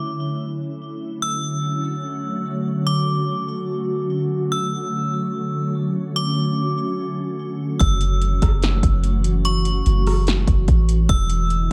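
Light digital reverb frames this hazy, ethereal excerpt of atmospheric cloud-rap at 146 BPM in a half-time 4/4 feel. It opens with a filter sweep as a glassy, dark FM pad holds sustained chords beneath a bright, inharmonic FM bell melody treated with chorus, phaser and tape echo. At 7.8 seconds a round, sine-like 808-style bass and an up-front deep house drum kit enter, the kit's deep kick, punchy snare and metallic hats carrying overdrive and 12-bit sampler grit, while the harmony moves from Dmaj7 to F#m7 and then E7 at 11.1 seconds.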